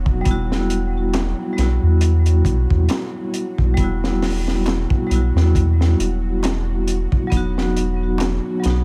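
A ringing vibraphone struck with medium hard mallets opens this cinematic, smoky trip hop excerpt at 68 BPM, its bright tone treated with tremolo and tape echo over a deep, round dub sub bass and a tense, string-like drone glowing quietly in the background with its own reverb and vibrato. A crunchy breakbeat kit enters at 0.1 seconds, up front with a saturated, gritty character, a high-tuned snare, a tight kick and hi-hat, its top end rolled off. The groove sits in 4/4 with a light swing on the sixteenths, and the harmony rests on Emadd9 before moving to B/E at 7.3 seconds, in E harmonic minor. From 1.1 seconds a crisp, metal-shelled darbuka played with hard hands sits far back in the mix, trailed by tape echo. The whole mix feels echo-heavy and studio-bound, a brief cut from a longer piece.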